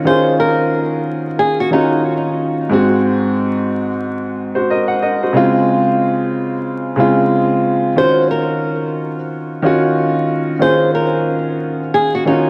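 Tough and moody, this swung hip hop cut at 91 BPM in Eb dorian sits on an upright piano accompaniment, woody and intimate with audible action noise and a vintage cassette tape color, moving through Ebm9, Ab7 and Dbmaj7 chords. A fingerpicked flamenco guitar with fresh strings carries the melody, entering at 0.1 seconds, falling silent at 2.0 and returning at 8.0 seconds with a tape echo trailing its notes. Both instruments sit up front in a dreamy mix soaked in plate reverb and dusted with vinyl crackle, tuned slightly flat to A4 = 437 Hz.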